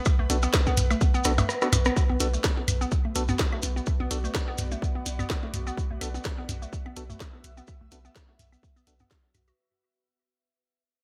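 A bright 1980s-style digital production with light reverb frames this sparse, clinical excerpt of minimal techno at 126 BPM in B minor, swung on the sixteenths and resting on a Bm7 chord. An up-front, punchy kick and a house kit with a cracking snare, hi-hat and rim click drive the groove, joined by tape-warm electronic claves, blips and toms, grainy maracas, a deep pitch-dropping sub bass, a hollow, warbling square-wave pluck riff, dark organ-like stabs, and a faint ethereal pad that breathes with sidechain pumping under phaser and ensemble chorus. A drum fill runs from 1.2 to 2.0 seconds as the kick drops out at 1.5 seconds, then the track fades out to the end while a filter sweeps across the organ stabs.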